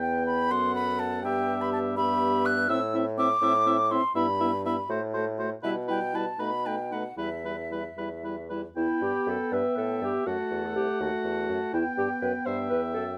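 In a rubato 6/8 at 82 BPM, this spirited, graceful classical-period movement for wind quintet in E minor sets an airy, vibrato-touched wooden flute with a crisp attack up front on the melody, over a warm oboe second line, a mellow, roomy clarinet and smooth-topped French horn in accompaniment, and a softly attacked bassoon bass with light vibrato, heard in light reverb as the opening section returns at 8.8 seconds in this short cut from a longer piece.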